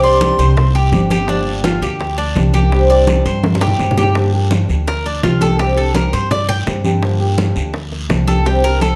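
This Cuban son and guajira piece, cut from a longer performance, has a sultry, warm mood over a straight four-beat pulse, with chords moving between Csus2 and Gm7. An airy silver concert flute with unsteady, tongued vibrato opens the melody but is heard only for the first 0.7 seconds. Beneath it, a fingerpicked old ladder-braced acoustic guitar with old strings gives dark, boxy accompaniment. The Cuban tres spins metallic arpeggios on doubled strings and takes a solo from 4.2 seconds. A woody, thumpy upright bass with gut strings sits up front, while thick-skinned, damped congas, round, low-tuned bongos in the background and a raspy, saturated guiro fill out the percussion, with a drum fill at 3.4 seconds. A moderate large studio reverb gives the ensemble a sense of space.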